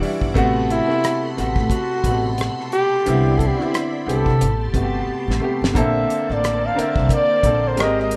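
A mellow flugelhorn carries the melody up front from 0.7 s, its jazz-style solo line touched with light vibrato over a soulful, smooth neo-soul groove at 89 BPM in 4/4 with a 16th-note swing. A clear baby grand piano accompanies from the start, intimate and natural with long sustain and audible action noise, moving through chords such as Am69, Cmaj9 and Am9 before a shift to Bbmaj9 at 5.8 s. Beneath it, an upright bass entering at 0.2 s gives a woody, thumpy pizzicato bottom with gut-string darkness. A cloth-damped drum kit plays hi-hat, kick, rim click and snare with a fat snare, tight kick and rolled-off top, and a drum fill at 5.1 s leads into the new section. A vintage string machine with violins holds sustained, shimmering sawtooth chords with a slow attack, bright and coloured by ensemble chorus, sitting low in the mix. The rough home demo sound has a moderate small-room reverb, and this short excerpt is cut from a longer piece.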